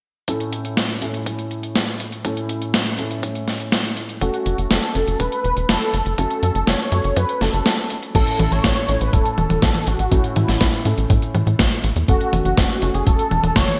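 Playful and sunny, this italo disco excerpt moves at 122 BPM in a straight 4/4, cut from a longer piece and set in A major, with the harmony shifting between A and F#m. Dark, boxy grand piano stabs with subtle chorus and a low-pass filter open the track alongside a gritty, overdriven sampler-style drum kit, whose medium-tuned snare, hi-hat, crash and toms sit up front under gated reverb, and a thumpy, compressed electronic kick. At 4.2 seconds a tight, punchy sequencer bass enters with a nasal sawtooth-and-square filter pluck that drives the groove. It arrives together with a thick, bold unison lead of detuned sawtooth and triangle tones, sustained with vibrato and coloured by analog chorus and delay. The kick drops out briefly from 7.7 to 8.1 seconds, marking the turn into a second section. A moderate, lush hall reverb and a bright 1980s-style digital production give the mix a polished sheen.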